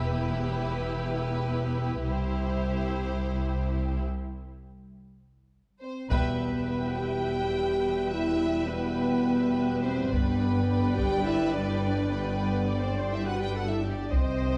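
Cinematic, epic orchestral film score in E minor, moving in free time with a heroic, relentless mood across this 14.6-second passage cut from a longer piece. The strings carry it from the start: a lush, vibrato-rich violin section sings the melody while a second, more distant violin line adds body beneath it, focused violas fill the accompaniment, and cellos and double basses anchor the low end with a clear, bowed weight. The opening builds over Em and C chords, easing into a break from 4.1 to 6.1 seconds as a dark, roomy French horn section enters at 5.8 seconds with sustained chords. At 6.1 seconds the ensemble hits an accent as the trombones join in the background and a taiko ensemble strikes in with heavy sticks, driving the music through Em and then G. The whole is bathed in a wet scoring-stage reverb, with a dark, warm production and a faint mains hum beneath.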